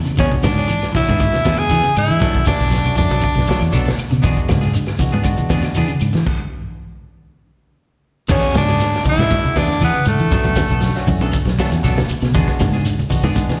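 Heard through a venue's PA with a recital-hall reverb, this funky, joyful afrobeat excerpt in E mixolydian moves at 118 BPM over a round, foam-muted fingered bass and a crunchy, gritty breakbeat kit with a punchy kick and dark cymbals. Very quiet woody claves join low-tuned congas and a grainy shekere, which sit in the background along with slightly broken-up guitar arpeggios, bright hollow-body guitar stabs and a barky tine electric piano with slapback echo, all circling E7 and Bm7. Up front, a raspy, forceful tenor saxophone with tape echo carries the melody, shadowed by a clear, very quiet trombone; both drop out before a stop at 6.3 s and return at 8.3 s.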